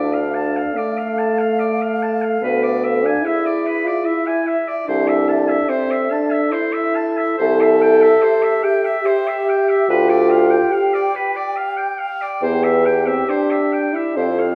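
In a rubato 3/4 at 72 BPM, this slow romantic movement for wind quintet unfolds with a serene, tender mood, a short section cut from a longer classical piece. It sits in A minor before settling into C major at 7.4 seconds. The airy, hollow concert flute carries the melody with a soft attack and vibrato, while the clear oboe sings a second line with its own vibrato, sounding distant and roomy. Beneath them, the dark, smooth-topped clarinet stays in the background as accompaniment, and the warm French horn, with light vibrato, stands up front as the most prominent accompanying voice. The bassoon anchors the bass with a mellow, punchy, vintage tone, and all five instruments play throughout the full 14.6 seconds, bathed in the lush reverb of a scoring stage with a 1.9-second decay.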